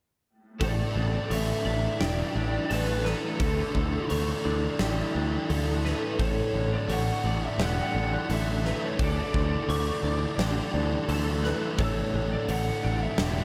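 A steady, straight 4/4 pulse at 86 BPM drives this wistful, hazy shoegaze and dream pop excerpt in A mixolydian, with every part entering together at 0.6 seconds and playing through to about 13.4 seconds. A huge arena drum kit sets the beat with a fat snare, punchy kick and hi-hat, its acoustic sound carried by a pumping hall room, while a bright, direct electric bass sits up front with a punchy attack. Two low riffs fill the middle: a thick, fuzz-distorted guitar thickened by ensemble chorus, and a dark, slightly broken-up guitar through a small old amp, colored with reverse reverb. Above them, a twangy, compressed twelve-string electric guitar plays clean arpeggios in the background through chorus and delay, and a lo-fi lead guitar through a small cranked amp carries the overdriven melody with delay. The chords alternate between Asus4 and Dsus2, and the whole mix is soaked in a lush hall reverb for a dreamy, blurred haze.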